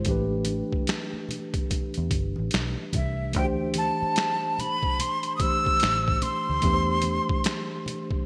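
A gritty, pitched-down boom bap kit with gated reverb, a dark, foam-muted electric bass and a mellow tine electric piano open this relaxed, soulful neo-soul R&B excerpt, swung on the sixteenths over A9sus4, D9sus4 and C69 chords; very quiet, low-tuned congas join at 0.5 s, and a breathy, bright jazz flute with expressive vibrato takes the melody at 3.0 s, all framed by a lush hall reverb and bright 1980s-style digital production.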